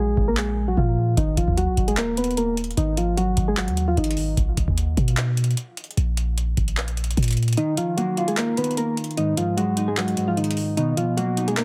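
A half-time trap beat at 150 BPM in Eb minor, cut from a longer piece, rides on a booming analog drum machine with a deep kick, metallic hats and handclaps, entering at 0.2 seconds beneath soft, round electric-piano-like synth keys that carry the warbling vintage melody through chorus, low-pass filtering and tape echo. A deep, boomy 808-style bass with a noise layer anchors the first 7.6 seconds under a filter sweep, then a clean, fingered electric guitar joins the keys as the kick drops out. The mood is dark and menacing, with a dry, heavily compressed radio sound that keeps every part up front.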